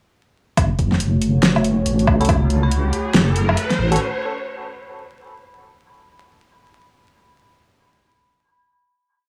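A half-time deep dubstep groove at 140 BPM in F# minor, swung on the sixteenths, builds across this cavernous, heavy four-second piece as a punchy overdriven kick and a fat-snare kit with closed hats and low woodblock drive under an up-front sawtooth wobble bass, joined at 1.0 seconds by a moody wave-folded analog pad, then a riser at 1.4 seconds, and sparse echoing tine electric piano stabs and an eerie inharmonic FM bell at 2.2 seconds, all within a dry, gritty room touched by vinyl crackle.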